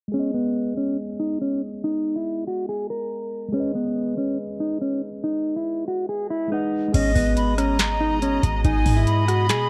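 Over a half-time trap pulse at 141 BPM in G# minor, this eerie, hard-hitting hip hop piece opens with a dark, up-front electric guitar melody, warbly and trailed by analog delay, over a mellow tine electric piano, both softened by a low-pass filter through a long filter sweep. At 6.9 s a booming, tape-tinged analog drum machine arrives with deep kick, crisp snare, metallic hi-hats, finger snaps, rim clicks and a crash, joined by a clean, sine-like 808-style bass, an airy, hollow concert flute second line with delay, and reedy bowed studio strings holding sustained chords. A filtered digital ambience surrounds the mix.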